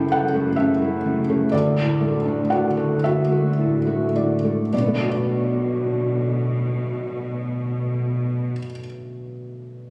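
A cinematic, emotional film score in B minor, sorrowful and bittersweet, moving slowly in a rubato 6/8 at around 34-45 BPM and slowing down through its first 4.7 seconds before shifting to a new section. A soft, felt-muted upright piano sits up front with a mellow, intimate tone and audible action noise, while a concert harp rings with fingerpicked arpeggios in the background and a lush, bowed cello section carries the bass with focused vibrato. Heard as a short cut from a longer piece, it has the sound of a phone recording in the room, with club reverb and compression over a moderate scoring-stage space.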